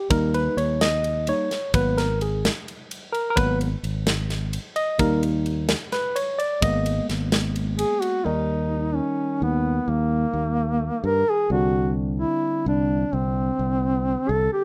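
Set in a straight, uneven 7/8 meter, this progressive instrumental feels intricate and tense from its first bar, a fragment lifted from a longer piece. A barky, bright tine electric piano, heard clean through a combo amp, carries the chords and takes a solo through the opening stretch, while a fingered electric bass sits up front with a direct, amped tone. A tight metal drum kit, recorded acoustically in a big room, drives the first half with a tight kick, a medium-tuned snare and bright ride cymbal before dropping out at 8.1 seconds. Just before that, at 7.8 seconds, a warm, close-miked duduk enters to take the melody in a folk style, its vibrato standing out front over the piano and bass. The harmony moves between major and minor colours with suspended and added-note chords, and the studio reverb gives the rough home-demo mix a roomy sheen.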